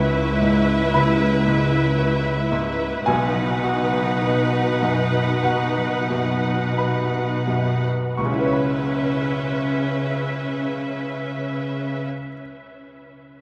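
A sorrowful, moving passage from an orchestral film score opens with strings, piano and harp together, its rubato pulse slowing through the first 8.2 seconds as a distant, lush violin section sings a smooth melody over an intense, up-front viola section and a rich, bowed cello bass. A brilliant grand piano with short sustain sits in the background while a fingerpicked concert harp rings out warm arpeggios, all set in a vast, echoing space. The strings fall away at 12.1 seconds and the harp soon after, leaving the piano to close at 13.4 seconds.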